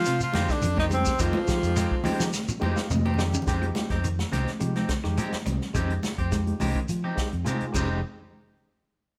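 Heard as a band playing live in one room with light reverb, this driving, funky afrobeat excerpt opens with a clear, up-front tenor saxophone melody, shadowed by a very quiet, breathy second tenor and a raspy, gritty baritone saxophone, with all three horns dropping out by 2.4 seconds. Underneath, a round fingered electric bass and a vintage drum kit with dark cymbals and a punchy kick carry the groove alongside a grainy, close shekere and bright, distant congas, while a clean picked guitar plays arpeggios in the background and a twangy, slightly broken-up guitar adds stabs. A barky, overdriven tine electric piano with fast tremolo accompanies over a single Fm9 chord and plays fills, first at 2.3 seconds and again at 7.2 seconds.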